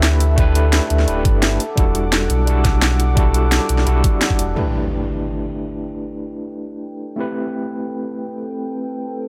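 Uplifting and lush, this liquid drum and bass fragment at 172 BPM in G major pairs a barky, gritty electric piano, overdriven through a combo amp with medium tremolo and dub echo, with a smooth, warbling vintage pad under chorus, moving through G69, Em11 and Am9 chords. For the first 4.6 seconds a deep sine sub bass with octave sits up front beside an overdriven drum kit of cracking snare and bright hats and a knocking electronic kick, all in light digital ambience. At 4.6 seconds the beat drops out for an electronic impact while a filter sweep runs across the pad, leaving the electric piano and pad to carry the rest.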